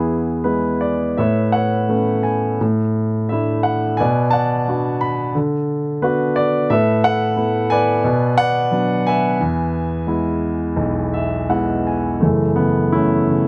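The rhythm moves in an unhurried 4/4 at about 87 BPM, with uneven, rubato beats that let the phrases breathe rather than march. This is a short cut from a longer classical piece for solo grand piano, lyrical in character yet brooding and cool in mood. The piano carries everything alone, ranging from B1 up to B5, with a polished, present tone and long sustain that sits up front against light reverb and a dark, warm production. The harmony drifts through open, suspended colours such as Aadd9, Dsus2/A and Asus2, with Bm and D6 shading the line before settling back on E. A piano fill arrives at 10.8 seconds, and at 12.2 seconds the music turns to a new passage on F#m7 that carries through to the close at 13.5 seconds.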